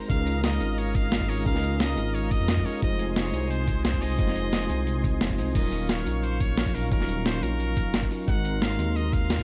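A dry excerpt of dreamy, lush liquid drum and bass at 176 BPM in Eb dorian, where a gritty, compressed breakbeat kit with crash, hi-hat and snare sits up front over a knocking electronic kick, and a dark, rumbling detuned saw bass drives from 0.1 seconds. A mellow tine electric piano with dub echo and a thick, bright unison pad with chorus and sidechain pumping carry the chords Db6, Fm7, Ebm9 and Ab9 from the very start. Above them, a nasal trumpet with straight mute and vibrato sings the solo melody through delay in a classical style.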